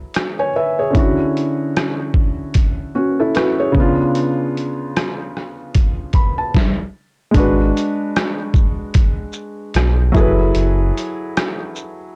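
A soft, felt-muted upright piano with audible action noise opens this nostalgic, reflective lo-fi hip hop excerpt at 75 BPM on swung 16ths, joined almost at once by a muffled, pitched-down trip hop sampler-style kit of thumpy kick, snare, rim click, hi-hat and shaker, and after a brief stop at 6.5 seconds a smooth sawtooth-and-triangle synth bass arrives up front at 7.3 seconds over a G#m7b5 chord, in a dry, gritty recording.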